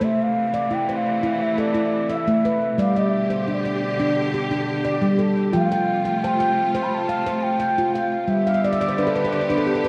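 Gentle and meditative, this world-style excerpt at 87 BPM in A minor sets a ringing, up-front handpan's arpeggios alongside an airy, mellow bansuri melody, both touched with delay, over distant, lush bowed string chords moving from Am through G and F, all bathed in a wet echo-chamber reverb, with a handpan fill closing out from 8.5 seconds.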